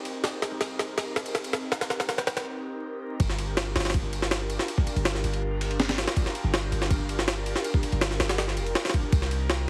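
An airy, breathy pad with chorus and phaser holds soft sustained chords over a deep, boomy 808-style bass with tube saturation, while a gritty, overdriven jungle sampler-style drum kit bursts in with a fill, thumpy kick, high-tuned snare and ride, building to a short break at 2.5 seconds. At 3.2 seconds the drop hits, moving from Cm7 to Gm7 in G minor at 162 BPM, with the pitched-up, compressed drums and dark bass sitting up front in this dark, frenetic drum and bass and jungle cut. The mix carries light digital reverb, vinyl crackle and a heavily compressed radio sound, returning to Cm7 at 9.1 seconds.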